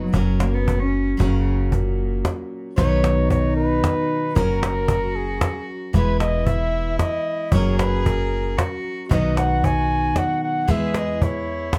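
Close, detailed microphones and light reverb give this excerpt of gentle, peaceful acoustic folk an intimate clarity, moving at 114 BPM in a straight 3/4 in B major. A distant, floating bowed cello takes a brief solo in the opening 1.2 seconds, while a bright picked steel-string guitar, a dark, woody pizzicato upright bass and a softly hand-played cajon with faint snares carry the accompaniment. At 2.8 seconds a mellow flugelhorn enters up front with the melody, its light vibrato and smooth top set in plate reverb over chords moving through B, F#, and E.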